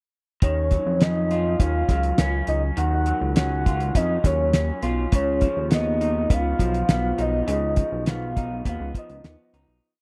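A cloth-damped, thuddy drum kit with a fat snare and tight kick sits up front in this wistful, mellow indie bedroom-pop piece at 102 BPM in Eb minor, carrying a relaxed dry backbeat beneath a glossy chorused synth bass playing a rounded melodic line, a slightly broken-up electric guitar through a small old amp fingerpicking a lo-fi roll pattern with lush chorus and vibrato, and a soft octave-layered synth lead singing a round, motif-based melody with tremolo, captured in a close 1970s-style studio sound with little reverb as the harmony moves from Ebm9 to Db9 before a fade-out from 7.5 seconds.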